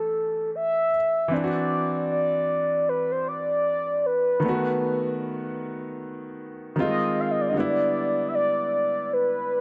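A mellow, horn-like synth lead and a clear grand piano open together on this sensual, late-night R&B cut, lifted from a longer piece. The lead carries the melody in a fairly high register, its round sawtooth tone shaped by a soft attack, long sustained notes, vibrato, a filter sweep and a chorus shimmer. Beneath it, the piano plays an intimate accompaniment that sounds natural and up front, with the action noise of the instrument audible. The rhythm carries a light swing, and the harmony moves through rich chords such as A7, D9 and B7 before settling on Em7 at 7.6 seconds. Light reverb and a studio ambience give the short recording a close, relaxed atmosphere.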